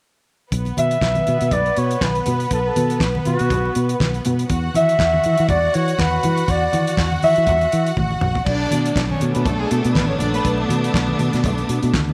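Disco with a joyful, celebratory lift, this excerpt features a distant, roomy flugelhorn carrying the melody over a lush, bowed string section playing a second line. Beneath it sit a round, foam-muted fingered bass up front and a damped 70s kit with a fat snare, tight kick, dark cymbals and handclaps, while very quiet, thin-skinned, low-tuned congas add bright color, all inside a moderate echo chamber reverb. The flugelhorn stops at 7.9 seconds, a drum fill arrives at 8.0 seconds, and from 8.5 seconds a close, focused string section holds sustained chords on Bm7.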